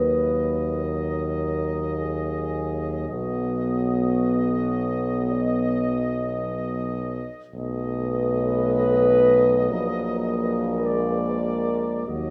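Classical, hymn-like music for brass band, solemn and elegiac, moves with a rubato feel through this 12.3-second passage cut from a longer piece. A mellow trumpet section carries the melody with light vibrato and a soft attack, while a dark, distant French horn section sounds a second line and a euphonium sits in the background. A very quiet, roomy trombone adds accompaniment, and a clear tuba stands up front on the bass, all heard in a moderate recital hall reverb with small room ambience.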